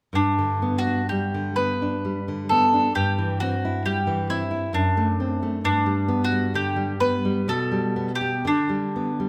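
Serene and lyrical, this romantic duo for mandolin and classical guitar moves at an unhurried 65 BPM in 3/4, its beats uneven and shaped by rubato as it settles in G major. The up-front nylon-string guitar supplies a full-bodied, fingerpicked accompaniment with audible finger squeak, while the bright, picked bowl-back mandolin sings the melody on double strings, entering at 0.2 seconds. A moderate concert hall reverb surrounds both instruments as the harmony drifts from G through C/G and D7/F# before returning home over G/B and G/D in this short excerpt.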